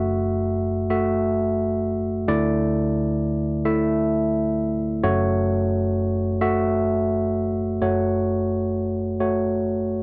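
A barky, lightly overdriven tine electric piano plays alone through a combo amp, sitting up front in a dry, close 1970s-style booth sound as it moves from F#m7 to Dsus2 at 2.3 seconds and settles on F#m at 5.0 seconds, a slow, melancholic and reflective folk passage in F# minor at 43 BPM in 6/8, spanning F#1 to E5 in a brief cut from a longer piece.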